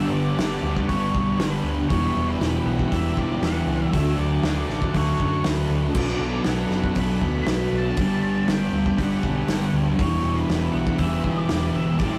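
Dreamy and hazy, this brief excerpt from a longer shoegaze and dream pop piece moves at 119 BPM in a straight 4/4, cycling through lush seventh chords from Gmaj7 through Em7, Dmaj7 and Bm7. A thick, dark fuzz guitar sits low in the background while a crunchy overdriven guitar carries the riff with a warmer edge, both churning together beneath the melody. Above them, an octave-fuzz lead guitar traces a distorted, picked line in a higher register, and a bright, vintage organ-like string ensemble holds sustained chords softly behind, shimmering with ensemble chorus. A round, punchy picked bass anchors the low end, and a loose indie drum kit with a tight kick, medium-tuned snare, hi-hat and crash enters at 0.4 seconds, its small room pumping audibly. The whole take has a rough rehearsal-room quality, with saturated grit and a moderate stone-room reverb that blurs the layers into a hazy wall of sound.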